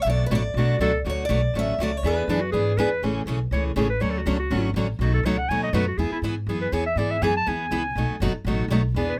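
A clear clarinet with vibrato and scooped notes enters at 0.6 seconds as a second line and takes a smooth-topped jazz solo from 3.0 seconds to the end of this playful, swinging snippet of acoustic string swing in the jazz manouche style. A boxy, bright parlour-style steel-string guitar picks the opening melody until 2.8 seconds, while a second picked steel-string guitar sits up front with audible finger squeak, carrying the accompaniment over Bm7, E7, Amaj7, Dmaj7, B7 and E chords. Underneath, an up-front upright bass with gut strings plays woody, thumpy pizzicato lines, all captured with close, detailed microphones and light reverb.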